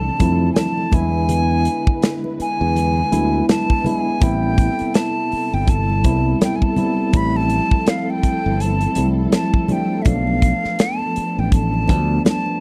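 A swung sixteenth-note feel at 82 BPM in 4/4 carries this short, bittersweet and smooth slice of lush 1970s-style soul, with an acoustic drum kit of hi-hat, tight kick and medium-tuned snare sitting up front from 0.2 seconds alongside very quiet, thin-skinned congas. A bright, punchy fingered electric bass holds the low end from the start until 12.2 seconds, heard direct and forward in the mix. A clean tine electric piano, played through its built-in speakers, supplies the accompaniment, while a dark, woody string section sustains bowed chords with vibrato in the background. Over this, a breathy silver concert flute carries the tongued, straight-toned melody in its upper register, close-miked and expressive. The harmony moves from Dm7 through E7, Am7 and Fmaj7 to Bm7b5, and the dry, close small-room sound gives the whole piece an intimate, vintage studio character.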